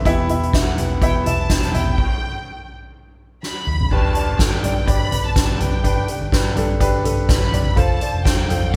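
Piano-driven pop with an anthemic, hopeful mood and a light swing, cut from a longer piece. An intimate concert grand with deep bass and audible action noise carries the accompaniment up front, alongside a round, foam-muted picked electric bass in the background and a soft-mallet drum kit with a fat snare, punchy kick and dark cymbals, while a distant, lush bowed violin section with vibrato and soft attack enters at 0.5 seconds with the melody. A stop from 2.0 to 3.9 seconds is broken by a drum fill at 3.4 seconds, and the harmony moves from E minor to G and then F in a room with light reverb.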